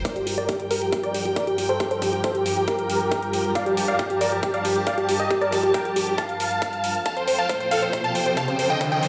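This excerpt of emotional, soaring uplifting trance at 137 BPM in G minor opens on a huge, bright, detuned supersaw melody carrying sidechain pumping, a low-pass filter sweep and digital delay, joined by a wave-folded unison pluck with a noise layer that sits in the background under its own sweep and delay. Warm, bowed chamber strings with vibrato hold sustained chords beneath, while a punchy kick and metallic hi-hat, both overdriven, drive the build-up over Gm7, moving to Fadd9 at 7.1 seconds, where a drum fill begins and an electronic riser follows at 7.5 seconds. A lush hall reverb surrounds the mix, which sounds as if played on a big sound system in a bare room.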